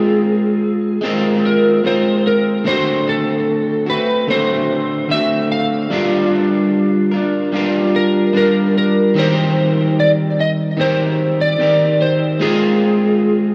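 Dreamy and hazy, this indie pop excerpt drifts at 74 BPM in Eb major, with an up-front electric slide guitar, played with fingerpicks and slightly broken up under analog chorus and tape echo, carrying the melody over a twangy, fingered electric guitar that sits at the edge of break-up and gets its own chorus, vibrato and tape echo while moving through Ab69, D7, Gm7 and Eb6 chords, all set in a moderate plate reverb and an echo-heavy, cassette-tinged mix.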